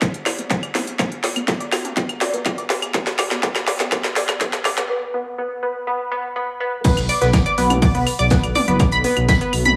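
Melodic techno with a driving, cinematic mood, cut from a longer piece and set in a steady 4/4 metre. A tight, up-front sequenced synth spins sawtooth-and-square arpeggios with a wave-folded edge and a mellow filter pluck, coloured by chorus, phaser, sidechain pumping and tape echo while a filter sweep opens it through the build-up. A punchy electronic kick and a layered techno kit of cracking snare, smooth hats, claves, toms and crash drive the opening fill, all with a tape-tinged character re-recorded in a small room. After a short break, the drop lands at 6.8 seconds, where a modern studio drum kit adds faint hi-hat, snare and tambourine in the background. From 7.0 seconds a menacing, detuned unison saw bass swells in low beneath the groove, pumping with sidechain compression. A moderate digital room reverb gives the mix a compact, controlled space.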